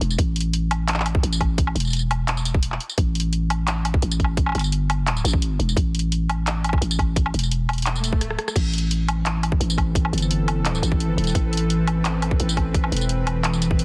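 A growling, buzzy 808-style bass with tube saturation and an up-front electronic drum kit of crash, handclaps, hi-hat, rim click, tambourine and woodblock open this tense, cinematic half-time drum and bass excerpt at 172 BPM in A minor, joined at 0.2 seconds by a tight, layered kick, with a background swell and drum fill leading into a bright, detuned, string-like drone with ring modulation, vibrato, sidechain pumping and its own reverb from 9.2 seconds over an Amadd9 chord, all in a dense, heavily limited mix with light reverb.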